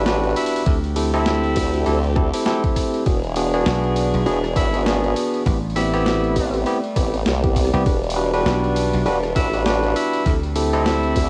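Glitch hop at 100 BPM in E minor with a swung, swaggering funk feel, this excerpt opens on an impact and a faint sub drop as a clear, jazzy tenor saxophone holds E4 with light vibrato and scooped notes over barky, amp-driven electric piano stabs, a chorused formant-sweep wobble bass joined by a punchy foam-muted slap bass entering at 0.7 s, an overdriven knocking kick, gritty pitched-down sampler drums with a high-tuned snare, and distant bowed chamber strings floating behind with 12-bit grit and cassette-tape colour through chords moving from Em7 to D7sus4, E7 and Am7.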